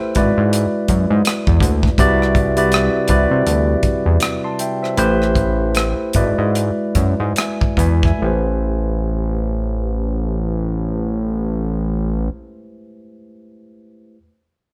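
R&B and neo-soul with a smooth, sultry mood, cut from a longer piece, where a barky, clean tine electric piano through a combo amp carries the chords up front over a fat, detuned sawtooth analog bass with a filter pluck and a tight, dry funk kit of hi-hat, kick and rim click that drops out at 8.2 seconds, the band playing live together in a stone room as the pace slows from 2.0 seconds.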